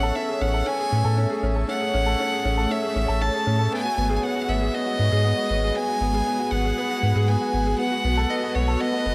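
Melancholic and moving, this 118 BPM piano and strings electronica excerpt sets an intense, airy-bowed solo violin melody with vibrato over a woody upright piano riff, a round, deep sub bass and a cloudy, evolving granular pad sitting in the background, with shimmer reverb on the violin, piano and pad inside a lush hall as the chords move from Amaj7 to G#m7 at 3.7 seconds and B7 at 7.8 seconds.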